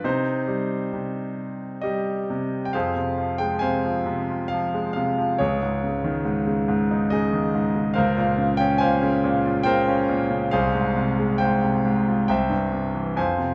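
In an unevenly pulsed, rubato 3/4 at about 69 BPM, this reflective, dark classical fragment in F minor, cut from a longer piece and tuned to A4 = 441 Hz, features a solo concert grand piano with a brilliant, polished, up-front tone and deep bass reaching from C2 to Ab5, set in a wet recital hall reverb, as it moves from an opening Cm into a longer passage from 2.7 seconds through Fm, Dbsus2 and Bbmadd9/Db, closing on a C chord at 12.3 seconds.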